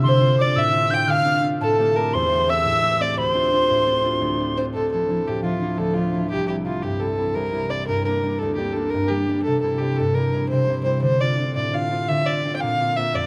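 A fingerpicked, ringing concert harp and a pure, metallic whistle with vibrato and a soft attack open this driving, dark and lively Celtic slip jig in D minor, moving in 9/8 at 114 BPM, with a woody, boxy solo fiddle taking the bowed melody up front from 0.1 seconds. The high whistle carries a second line until 4.6 seconds, after which the fiddle, with its light vibrato, and the up-front harp accompaniment carry on together over chords such as Dm7, C and Gm. Light reverb and small room ambience give the cut from a longer piece a rough home demo feel.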